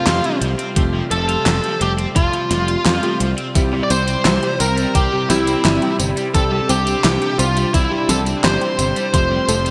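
A distorted, bluesy lead guitar sits up front, carrying the melody through digital delay over an uplifting, nostalgic synthwave groove at 86 BPM in F major, moving from Fadd9 to C at 3.6 seconds. Beneath it, a thumpy, overdriven electronic kick and a layered pop kit with a fat snare, metallic hats, handclaps and tambourine in gated reverb drive things along with a dark, round, punchy picked bass. A smooth, detuned analog pad pumps in the background alongside a bright cranked stack guitar riff, clangy electric grand piano stabs, a pure, warbling FM bell line and, from 3.6 seconds, a very quiet analog pluck arpeggio, all framed in bright 1980s-style digital production with a plate reverb.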